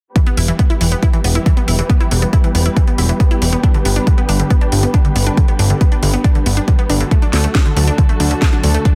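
Driving and soaring, this uplifting trance excerpt in E minor runs at 138 BPM in a straight 4/4, cut from a longer piece and moving from E minor through G to D. An overdriven, punchy electronic kick sits up front, joined by a layered house kit with a cracking snare and bright hats. A fat, detuned sawtooth bass with a fast attack enters at 0.4 seconds and pumps against the kick. Above it, a lush, warbling unison pluck spins sawtooth arpeggios with a noise layer and a short decay, pumping and trailing dub echoes. A dark, close studio string section carries sustained bowed chords with vibrato and portamento, pumping under the kick while a low-pass filter sweep runs across it until 8.9 seconds. The mix is dry and dense, with a heavily limited modern master.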